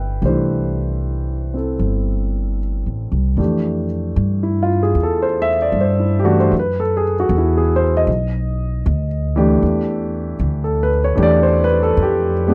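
Romantic and tender, this slow jazz ballad fragment sways at 77 BPM in swung 4/4, pairing a dark, mellow concert grand piano with audible action noise and intimate accompaniment with a woody, thumpy pizzicato upright bass, both up front in a dry, close 1970s-style studio sound as the harmony moves from C6 through Fmaj9 and B7alt to Em7.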